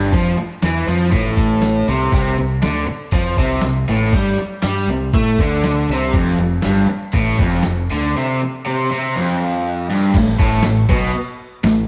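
Cassette-tape grit and a moderate stone-room reverb wrap this short, swaggering garage rock cut, played live by a small band in one room, with the top end rolled off above 8.0 kHz. At 120 BPM in a straight 4/4, a raw, double-tracked electric guitar sits up front, picked and overdriven with a touch of spring reverb as it drives the riff. Beneath it, a growling fingered electric bass, heard direct and through an amp, adds its own bright overdriven edge. The lo-fi, sampler-style drum kit sounds compressed, pitched down and muffled, with a thumpy kick, a medium-tuned snare, and crash and ride cymbals. The riff moves from A minor to C and then F power chords before the harmony drops away at 10.1 seconds for a brief closing passage, with the parts stopping just before 12 seconds.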